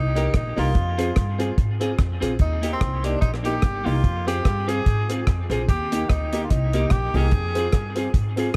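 Ska at 146 BPM in Eb major with a swung, bouncy feel, this cheerful excerpt cut from a longer piece alternates between Eb and Fm over a small room with light reverb. A woody, thumpy upright bass on gut strings and a dark, dry reggae drum kit with a tight kick, hi-hat and rim click sit up front, while a clean, picked semi-hollow electric guitar and a clear, slightly detuned upright piano with boxy stabs fill in from 0.2 seconds. Above them, a distant, roomy tenor saxophone carries the melody with light vibrato, its dub echo shared only with the guitar, until the sax stops at 8.0 seconds.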